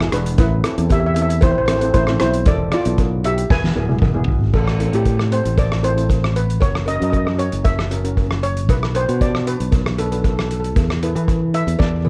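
Heard through worn, warbly cassette tape with light reverb, this bittersweet, cool calypso in A minor moves at 116 BPM, led by a shimmering lead steel pan played with medium rubber sticks and treated with tape echo, which takes a solo from 4.5 seconds. Beneath it, cello pans struck with hard rubber sticks sit boxy and distant, while a bright, growly fingered electric bass and a soft-mallet drum kit with dark cymbals, a fat snare and a punchy kick stay up front, the drums rolling into fills at 3.5 and 11.8 seconds. A metallic cowbell sits in the background as the chords move from Am through E7 to F#7, Bm and Esus4.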